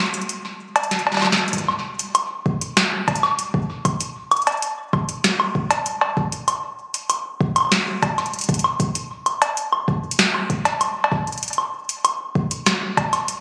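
Heard through a phone in the room, this short cut from a longer piece is compressed and bathed in club ambience and a long plate reverb. It's an intricate, glitchy IDM groove at 97 BPM in a straight 4/4. A booming analog drum machine carries the rhythm up front from 0.1 seconds: a crisp snare, metallic hi-hats, cowbell and woodblock, its tape-warm tone re-recorded in a large room and trailed by digital delay. The opening break gives way to a drum fill from 0.9 seconds. At 1.5 seconds a soft, overdriven electronic kick drum enters, also up front, and holds to 13.1 seconds while the drum machine plays on to the end.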